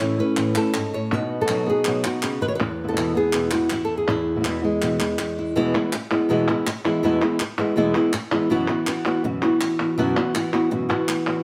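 Flamenco in E major at 162 BPM, fiery and proud, cut from a longer piece: an up-front fingerpicked guitar carries the melody with audible finger squeak, a second, darker guitar on fresh strings adds fingerpicked stabs, and crisp, compressed, saturated palmas drive the rhythm throughout, all set in a moderate stone-room reverb, with a new section arriving at 5.6 seconds.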